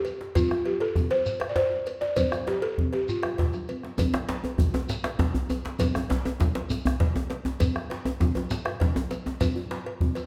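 Powerful and driving, this short cut from a longer West African drum ensemble piece moves at 132 BPM in a straight 12/8 in F major pentatonic, opening with a woody, buzzing balafon melody played up front with soft rubber mallets from 0.0 to 3.7 seconds over a close, dry metallic cowbell, bright high-tuned congas, a grainy shekere, a medium-tuned djembe with metal rattles struck by hard hands and a round bombo, before a drum fill at 3.2 seconds leads into a second section where a deep, rattling second djembe joins up front from 4.0 to 9.5 seconds, all carried by a moderate recital hall reverb.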